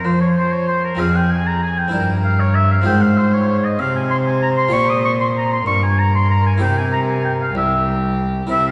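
This excerpt from a longer baroque-style sonata movement opens with all four players together: a violin, an oboe, a harpsichord and a cello, moving in a flowing, grave 6/8 at 64 beats per minute counted in dotted quarters, with a straight feel and tuning at A4 = 439 Hz. The oboe sits up front with a clear, vibrato-touched voice that still carries a distant, roomy quality, and it takes the second line, reaching as high as Eb6. The violin carries the melody between E4 and C5 in a softer, period-style gut-string tone with a reedy edge, while the cello anchors the bass from C2 to F3 with a rich, close, bowed sound that is prominent in the balance. The harpsichord fills in the accompaniment in the Italian style, its plucked single set of strings sounding round, full and dry. A wet church acoustic with a long 3.1-second reverb surrounds the ensemble, and the recording's top end is gently rolled off. 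The harmony moves from C7/F through Fm, C7/G, Fm/Ab and Bbm69 before settling on C at 6.6 seconds, with the passage lasting about 8.7 seconds.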